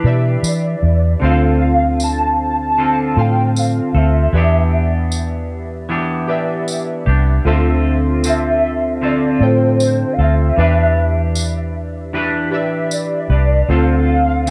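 A lightly swung 4/4 groove sets a lonely, mellow mood in this excerpt of dark bedroom-style indie pop, with a round, punchy, foam-muted electric bass up front beneath a clean, twangy picked electric guitar bathed in lush chorus and a gentle pitch drift. Warbly lo-fi synth keys add detuned, decaying tones with cassette-tape character and plate reverb as the harmony alternates between Em7 and Dm7, while a close, dry, jingly tambourine comes in at 0.4 seconds. From 0.5 seconds a nostalgic, vibrato-laden lead carries the melody through ensemble chorus, plate reverb and tape echo.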